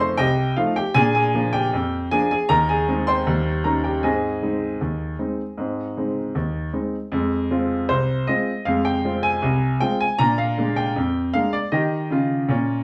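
A clear baby grand piano opens alone on an F7 chord and carries this jaunty, cheerful ragtime piece from start to finish. The tempo is 78 BPM in 2/4 with a straight feel, and the instrument is tuned slightly low, with A4 at 438 Hz. Its range stretches from C2 up to Db6, and its tone sounds natural, with short sustain, sitting up front in the mix. The harmony moves through Bb7, Ab over Eb and Eb7 before settling on Ab, then a second section begins at 7.1 seconds on F minor and turns back through Bb7 to Eb7. A wet studio reverb frames the playing, heard from further back in the room, and the recording is a cut from a longer piece.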